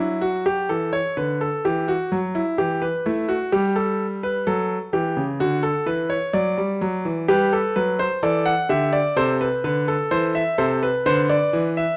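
In a straight 4/4 pulse at 64 BPM, this lively, joyful baroque-style three-part classical fugue for solo grand piano, heard as a 12-second excerpt from a longer piece, sets a clear, up-front concert grand with a deep bass and smooth, vintage tone, spanning C3 to F#5, in a moderate recital hall reverb captured by close, detailed microphones as it moves through D/F#, Em, A7/G, D, G and Am/C.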